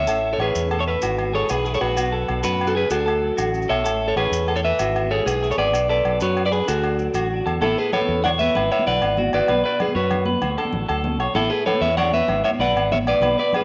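Opening at once on a bright, slightly broken-up lead guitar with slapback echo carrying a twangy melody over a warm clean guitar's chorused chords, a direct, amped fingered bass, bright picked arpeggios from a second clean guitar, ringing agogo bells and grainy maracas, this joyful, carefree highlife band excerpt in A major rolls along at 128 BPM in a straight 12/8 through a moderate echo-chamber reverb, cycling Aadd9, Eadd9/G#, Bm and D, with hard-handed, high-tuned congas taking over from the maracas at 7.6 seconds.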